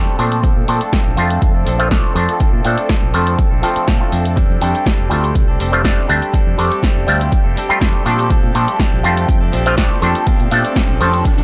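A dry, gritty hardware recording with digital ambience carries this funky, feel-good filtered disco house passage: an overdriven, up-front electronic kick and a punchy analog drum machine's snare and sidechain-pumped hi-hats drive a round, dark fingered bass, a stringy, twangy auto-wah clav with phaser, a bright, compressed clean guitar riff and a lush vintage string machine holding soft chords in the background over Bbmaj9 and F69, all under a filter sweep that runs the full length, while a very quiet riser enters at 9.7 s.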